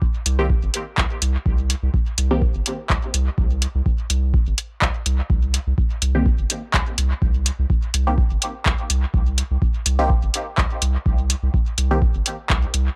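Dub techno in C minor at 125 BPM with a light 16th-note swing, hazy and hypnotic, taken from a longer piece. A deep, tape-warm electronic kick and a booming analog drum machine with metallic hi-hats and handclaps carrying dub echo drive the groove, while a soft, round sub bass sits up front with transformer saturation and sidechain pumping. A muted, detuned sawtooth chord stab with a filter pluck, phaser and dub echo appears briefly near the start and returns from 6.1 seconds. The whole mix is dry and gritty, with little reverb.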